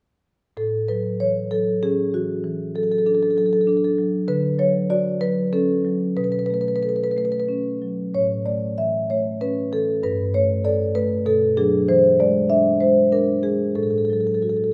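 Contemporary classical music for solo marimba, played with medium mallets in a warm, playful mood, moving in a flexible, rubato three-beat pulse. The marimba sits up front and spans a deep low register up to its bright upper notes, heard from 0.6 to 14.7 seconds in this short passage cut from a longer piece. Colorful extended harmonies such as suspended, major-seventh and augmented chords drift past before settling on an open close, all bathed in the lingering reverb of a recital hall.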